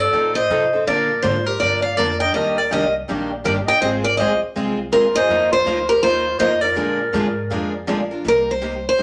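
A bright, up-front parlour steel-string guitar melody opens this fiery, swinging excerpt of fast acoustic string swing at 163 BPM alongside a raspy, growling clarinet second line with vibrato and a woody, thumpy pizzicato upright bass, while a second picked steel-string guitar and a swing-style guitar with fresh strings add boxy accompaniment, all set in a wet studio reverb as the clarinet drops out at 7.9 seconds.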